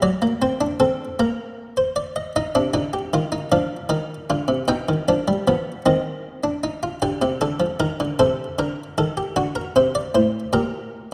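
Moving in a straight 6/8 at 51 BPM counted in dotted quarters, this serious, solemn baroque-style three-part fugue in C minor is an excerpt cut from a longer piece and tuned to A4 = 439 Hz. A buff-stop harpsichord in the French style plays alone throughout, its muted, lute-like plucked tone sitting up front and ranging from A2 to G5 within a moderate concert-hall reverb. The harmony passes through chords such as D7/F#, Cm, G7/B and Adim/C before settling on Gm/Bb at 10.5 seconds.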